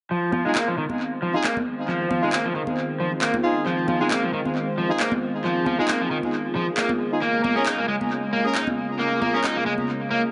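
Swung 16ths at 135 BPM drive this gritty, energetic breakbeat cut in F minor: a crunchy, bright, overdriven guitar riff sits up front under a filter sweep from 0.1 s, while ringing, close congas and layered, tape-toned electronic handclaps keep the groove. A jazz-style horn section with light vibrato adds warm background stabs, and a swirling, detuned sawtooth pad with phaser and chorus holds sustained chords from Fm7 to Bbm7 at 7.2 s, all inside an echo-heavy mix with moderate spring reverb.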